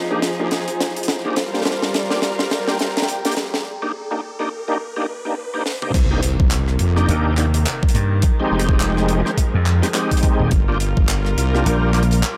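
Swung sixteenths drive this funky, swaggering glitch hop clip, with a tight, dry funk kit and its high-tuned snare up front. A heavy, saturated wobble bass growls beneath gritty stabs from a thick tonewheel organ turning on a slow rotary speaker with key click, while a soft, breathy pad and smooth bowed strings sway under the sidechain pumping as a riser climbs in the background toward the drop at 5.9 seconds. There an overdriven electronic kick knocks hard, and a punchy, amped slap bass joins at 7.1 seconds. The whole cut has a gritty hardware edge.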